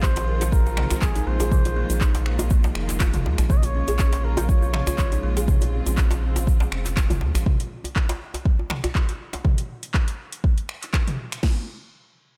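Up front, a deep house drum kit with a deep kick and punchy snare drives this afro house drop at 121 BPM in Bb minor, its overdriven, layered sound re-recorded in a large room, with a second kit layer adding metallic hi-hats, handclaps, finger snaps and toms. Underneath, a round sine sub bass pumps against the kick, joined by a rich, bowed symphonic string section holding sustained chords, also pumping, over a move from Fm7/Bb to Bbm7. A solo trumpet in a bucket mute plays a veiled, raspy, growling jazz-style melody with scooped notes and vibrato, trailed by a diffuse ambient delay until 5.5 seconds. Further back, a buzzing, woody kalimba with a thumbnail pluck spins short, vintage-sounding arpeggios through the same delay, while a grainy egg shaker and a close, dry djembe struck with hard hands, entering at 0.2 seconds, add acoustic texture. The mood is driving and spiritual, and after the melodic parts fall away the drums and djembe carry this excerpt on, the djembe dropping out at 9.4 seconds and the kit running to 11.6 seconds.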